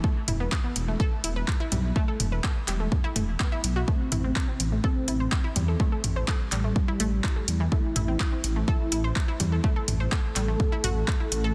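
A punchy, overdriven electronic kick sits up front in this cinematic, melancholic melodic techno excerpt at 125 BPM in A minor, joined from 0.3 seconds by a deep, rumbling detuned saw bass that pumps against it and a deep house kit of handclaps, metallic hi-hats and toms with a tape-warm edge and studio reverb. A round, chorused analog pluck plays arpeggios through dub echo from the first beat, and at 3.9 seconds, as the harmony moves from E5 to Am, a thick, bold unison lead enters with vibrato, a moving notch and delay. The dense, heavily limited master carries a light reverb.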